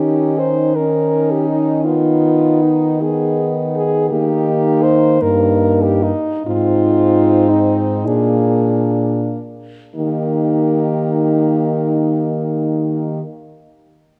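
A moderate scoring-stage reverb, lasting about 1.9 seconds, surrounds this serene, tender classical piece for horn quartet in Eb major, cut from a longer work and moving in a rubato 6/8 at 29-56 BPM by the dotted quarter, slowing from 3.0 to 10.0 seconds before a new section arrives at 10.0. A warm French horn sings the smooth-topped melody, while a second horn, carrying light vibrato and a punchy edge from the background, shapes the line beneath it. A distant, roomy horn supplies the accompaniment, and a close-miked, mellow horn holds the bass up front.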